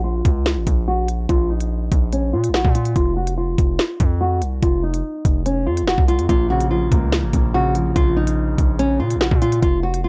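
A saturated, heavy 808-style bass with a fast attack sits up front in this menacing half-time drill cut, under a knocking kick, sharp snare and crisp hats that enter at 0.3 seconds. A small, dark fingerpicked nylon-string guitar carries the low-passed melody through a filter sweep that runs until 6.3 seconds. At that point a soft, felt-muted upright piano joins, mellow and intimate, and the whole ominous passage stays dry and close.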